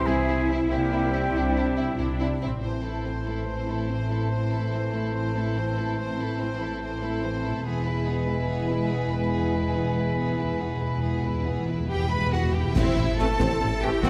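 A 12/8 pulse at 95 BPM drives this determined, swashbuckling stretch of heroic adventure film score, moving from C to A minor and then E. A focused, lush violin section carries the melody over a second violin line, woody violas, smooth cellos and up-front double basses, while a pure, hollow flute and a solo oboe add second lines and mellow horns and tight, vintage trombones hold sustained chords. Close, dry timpani enter with a fill at 7.7 seconds, bright cymbals and bass drum build from 10.2 seconds, and at 12.8 seconds a very quiet tuba, snare and dark cymbals join a band accent on A minor, all set in a moderate scoring-stage reverb.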